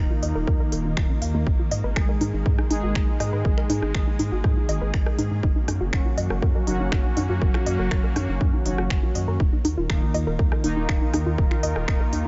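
A dark, driving melodic techno excerpt opens with a bright, airy pad holding sustained chords, a warbling lo-fi pluck spinning arpeggios under a filter sweep with tape echo, fat brassy synth stabs and a round, deep analog bass, all pumping to the sidechain. A swarming, tense drone slips in very quietly at 0.2 seconds alongside smooth hi-hats, finger snaps and rim clicks, and a heavy, up-front electronic kick lands at 0.5 seconds. The chords move between suspended and plain shapes under a digital ambience.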